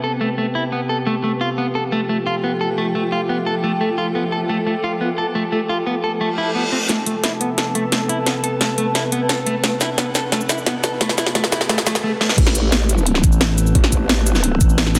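An up-front electric guitar at the edge of break-up picks arpeggios through tape echo and a low-pass filter, over an eerie, inharmonic, metallic FM drone and a blurred granular pad in the background, opening this tense, aggressive dark technical drum and bass excerpt. A very quiet reverse cymbal and riser lead into a build-up at 6.9 s, where a tape-toned drum kit arrives with a cracking, soft-clipped snare, hi-hats, shaker and crash cymbal. The drop at 12.4 s brings a knocking electronic kick and a wobbling, saturated growl bass, joined at 13.2 s by a thick growling FM bass, all set in a lush hall reverb and a dense, heavily limited master.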